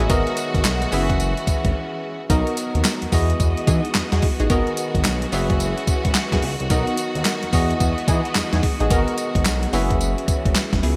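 New jack swing R&B in B major moves at 109 BPM with a bouncy, flirty sixteenth-note swing, in a short section cut from a longer piece. A crisp 8-bit drum machine sits up front with a thumpy kick, medium-tuned snare, handclaps, hi-hat and tambourine, overdriven and treated with gated reverb in a large-room sound. A smooth, gliding sawtooth-and-square synth bass with vibrato and portamento anchors the low end, while a bell-like tine electric piano adds bright, clean accompaniment. Lush bowed studio strings hold woody, sustained chords, and a punchy, nasal polysynth with chorus and a filter pluck adds funky stabs from the background. The harmony cycles through G#m9, F#9sus4, Bmaj7 and Emaj9, with a brief break at 1.7 seconds, all framed by light reverb and bright 1980s-style digital production.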